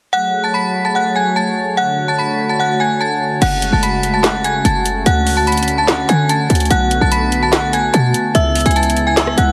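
Eerie and hard-hitting, this trap-flavored hip hop excerpt moves at 146 BPM in 4/4 with a half-time feel, set in F# minor. A metallic FM bell carries the melody up front from the first moments, its bright, inharmonic tone ringing out with a long release and a chorus shimmer, while a smooth, detuned sawtooth pad holds sustained chords underneath, also treated with chorus. The harmony moves from F#madd9 to Dmaj7, returns to F#madd9 and Dmaj7 once the beat arrives, then continues on through Bm7 and C#m7. At 3.4 seconds a short 808-style bass and a trap drum kit enter together: the bass is punchy and tight, a sine tone with a noise layer and a fast, decaying attack, and the electronic kit brings a woody snare, metallic hi-hats, handclaps, rim clicks and a crash cymbal with a tape-warm character. Light reverb sits over a heavily compressed, radio-like sound, and the piece is cut from a longer track, running until 9.5 seconds.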